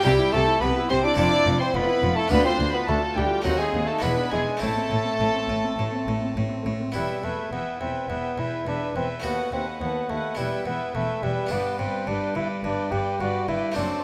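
A mellow, up-front solo bassoon carries the melody through this driving, stormy baroque-style concerto excerpt at 105 BPM, shifting from A minor to E minor at 6.9 s, while a warm violin section also plays the melody high in the background, a rich second violin line and dark, distant violas fill the middle with gut-string, period-style bowing and light vibrato, a bright Flemish harpsichord plucks the accompaniment, and reedy cellos and double basses anchor the bass, all set in a moderate recital-hall reverb captured with close, detailed microphones.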